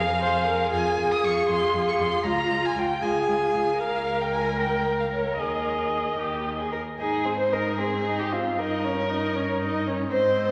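Pulsing in a straight 6/8 at 77 dotted-quarter beats per minute, this quick classical-period movement for string quartet feels stormy and urgent, set in A-flat major but opening on F minor harmony. A warm first violin carries the melody from Bb4 up to Eb6, its bowed line expressive, with vibrato, portamento and a smooth top. Beneath it, a dark second violin traces a narrow second line that sounds distant and soft in attack. The viola sits close with gentle attacks, and a rich cello anchors the bass between Db2 and Ab2, a little lower in level than the others. All four single players use vibrato and portamento, and a wet scoring-stage reverb with a 2.0-second tail surrounds them. At 7.0 s the music moves into a new section that lands on A-flat major before turning toward Eb7 at 8.6 s, and the fragment breaks off at 10.5 s.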